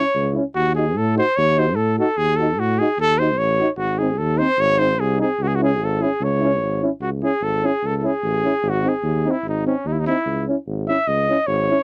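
Swung sixteenths in a brisk 2/4 at 148 BPM drive this bittersweet, fiery Balkan brass band fragment in C# harmonic minor, where a mellow, soft-attack trumpet carries the melody up front and takes a solo from 7.0 seconds, a background trombone with light vibrato and a distant, roomy euphonium with vibrato fill the accompaniment, and a warm tuba anchors the bass up front, all captured in a dry, close 1970s-style studio sound with light reverb.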